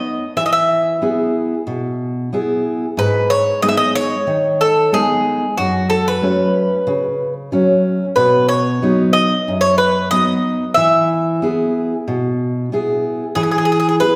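Hopeful Greek folk in E major at 92 BPM in a straight 4/4, with a bright, metallic bouzouki carrying the melody up front on its double strings, some octave-doubled, over a fingerpicked steel-string acoustic guitar with fresh-sounding strings, both playing throughout this short passage as the chords move from E through G#m, F#m and B back to E, all bathed in the lush reverb of a recital hall.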